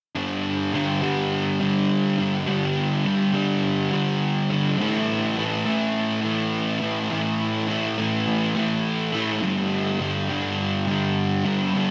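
A fuzz guitar plays alone from 0.1 s, its distorted, double-tracked tone sitting up front as it moves between G5 and A5 power chords in a hazy, blissful rock groove in straight 4/4. The electric guitar is picked in the low register, colored by subtle chorus and a diffuse ambient delay, while a moderate plate reverb with a 3.1-second decay soaks the dreamy mix. This short cut from a longer piece runs to 11.9 s.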